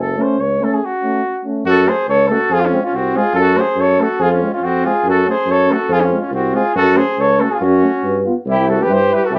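Fiery yet bittersweet, this short Balkan folk brass passage, cut from a longer piece, moves at 141 BPM in a straight 2/4 in F# Hungarian minor. A flugelhorn carries the melody up front from the first moment, its tone warm with a light vibrato and a distant, roomy quality, while a tuba anchors the bass with a vibrato of its own and the same spacious, forward presence. Euphonium and trombone slip in at 0.2 seconds as soft accompaniment, the euphonium smooth-topped and gently trembling, the trombone tucked further into the background. A brief break falls between 0.8 and 1.6 seconds, and at 1.7 seconds a trumpet joins with a smooth-topped second line. The harmony rocks between F#m and Fm before turning to G7 and landing on C, all heard as a band playing live together in one room with moderate studio reverb and a classical polish to every player's tone.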